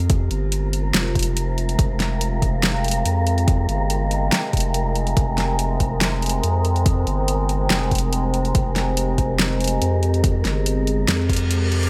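A resonant, sawtooth-edged drone with moving overtones and chorus opens this dark, cavernous deep dubstep excerpt in F minor, resting on a single F minor chord over a thick, saturated sine sub bass and a breathy, wind-like tuned noise layer that hovers on Bb4 in its own reverb. The half-time groove at 142 BPM comes from an overdriven electronic kick that sounds re-recorded in a large room, playing alongside an up-front, overdriven deep house kit with a fat snare and hi-hat. An electronic reverse cymbal rises in at 11.3 seconds to close the passage, all set in a light reverb.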